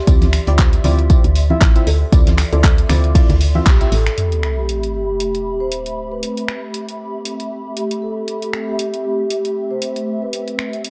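An up-front, deep electronic kick anchors this moody, smooth deep house excerpt in A minor at 117 BPM, with a 56% swing on the sixteenths, before dropping out at 3.8 s. Beneath it, a woody, round FM bass with tube saturation pumps against the sidechain. A detuned, warbling chord stab soaked in chorus and dub echo sits alongside it, and a hollow, flute-like pad with ensemble chorus sustains Dm9 before moving to Am9 at 4.2 s, where a sub drop hits. A tape-tinged, layered drum kit of finger snaps, handclaps and hi-hat runs throughout, joined early on by a muffled, lo-fi soul kit of hi-hat, snare and tambourine with its top rolled off, and by ringing congas played with soft hands in the background. A buzzing kalimba with tape echo plucks a brief melody at the start, and a mellow vibraphone struck with soft mallets carries the melody from 3.7 s, trailing dub echo, all within a dark production of light reverb and studio ambience.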